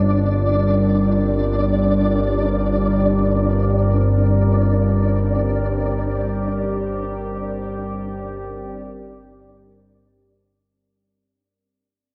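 Unsettling and desolate, this short dark ambient drone excerpt hangs in free time on a single G minor chord, tuned slightly low at A4 = 439 Hz. Up front sits an analog drone in the low register, a sawtooth and pulse-wave tone with pulse-width modulation and chorus that warbles and slowly evolves with a vintage character. Above it, a deep, moody pad of sawtooth, sine and sub-octave voices in unison holds sustained chords through chorus and its own reverb, fading in across the whole clip. A grainy granular texture of detuned triangle tones flickers quietly in the middle register with its own reverb. Every part swells in slowly and trails off with a long release, and a plate reverb with a long tail soaks the dreamy mix, while a fade-out runs from 5.7 s to the end at 10.7 s.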